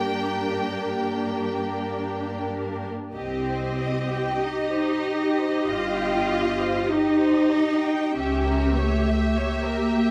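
Yearning and solemn, this slow romantic movement for string orchestra unfolds in a flexible rubato, cut from a longer piece. A distant, intense violin section carries the melody high above a smooth, even second violin line, both singing with vibrato. Beneath them the violas add expressive accompaniment with soft attacks and gliding portamento, while the focused cello section sits up front and anchors the bass. At 3.1 seconds the double basses join from afar with light vibrato, and they drop out at 9.2 seconds as the harmony moves from Gm through Cm to a tense C#dim7. A moderate recital-hall reverb surrounds the bowed strings with a gentle sense of space.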